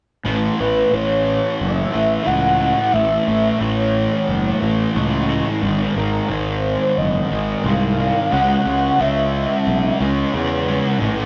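Rock excerpt with a blissful, hazy mood in straight 4/4, built on a dark, double-tracked fuzz guitar riff sitting up front, underpinned by a growly, punchy overdriven fingered bass that plays from 0.3 to 11.2 seconds. Above them, a velvety synth lead blending detuned sawtooth, triangle and sine tones with a sub octave carries the melody with sustained notes, chorus and vibrato until 10.0 seconds. The harmony moves from A to G# to C#m, and the rough rehearsal-room recording sits in a wet small room reverb.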